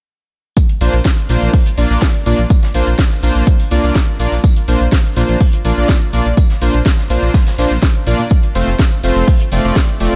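Progressive house at 124 BPM in a straight 4/4, this expansive, uplifting excerpt opens at 0.6 seconds on a Bbadd9 chord before moving to F at 8.3 seconds, driven by a punchy, overdriven electronic kick sitting up front alongside a layered house kit with cracking snare and bright hats, both treated with overdrive and studio reverb, while a very quiet acoustic brush kit adds a high-tuned snare, hi-hat and tambourine from a small room. A dark, rumbling detuned saw bass with a beating, deep tone pumps against the sidechain beneath soft supersaw stabs, which are smooth, evolving and up front, pumping and trailing delay across a range from A3 to D5. The overall sound is dry, carrying little reverb.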